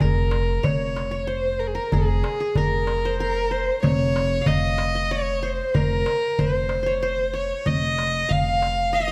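This Arabic maqam ensemble piece in F maqam bayati moves at a stately 94 BPM in 3/4, carrying a passionate mood through a short section cut from a longer work. A single bowed violin leads the melody up front, its warm, expressive tone shaped by vibrato, portamento and a soft attack as it ranges between Ab4 and F5. The qanun traces a second line in that same register, sounding bright and bright-edged from its fingerpicked triple strings, and it sits further back than the violin. Underneath, a pizzicato upright bass with steel strings holds a low F1, woody and growly and close in the mix. A small metal-shelled darbuka adds crisp, high percussion until 8.8 s, while the other parts continue to 9.1 s. Close, detailed microphones capture the players within a moderate recital hall reverb that lends the ensemble a natural sense of space.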